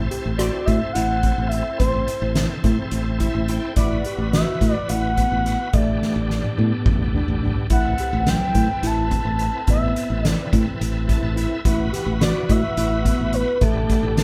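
Heard in a reverberant room where the band plays live together, this short cut from a longer progressive instrumental moves at 213 BPM in 7/8 with a straight feel, driving and tense in A dorian. The soft-mallet drum kit sits up front with a fat snare, a boomy kick, hi-hat, rim clicks and toms, and it plays a fill from 6.0 to 7.7 seconds, while a bright, growly fingered electric bass holds the low end from A1 to A2. A tine electric piano, clean through a combo amp with medium tremolo, carries arpeggios in the middle register, and a shouting tonewheel organ, lightly overdriven with chorus vibrato and a fast rotary speaker, fills out the accompaniment and adds short fills, the first at 2.9 seconds. Entering at 0.4 seconds, a smooth, expressive synth lead blends sawtooth and triangle tones with a soft attack, sustained notes, vibrato and chorus, its dark colour singing the melody between A4 and A5. 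The harmony circles from Am through Esus2/A and Gadd9/A to Amadd9, keeping a held A beneath the shifting chords.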